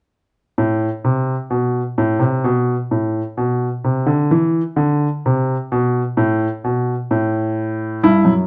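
A dark, warm production with light reverb places a present, polished, up-front grand piano close to the listener, its tone warm and its highs softly rolled off. This is a baroque-style three-part fugue in A minor at 64 BPM in a straight 4/4, driving yet contemplative. The solo piano plays from 0.6 to 8.5 s, in a short passage cut from a longer piece, with the voices ranging from F#2 up to E4.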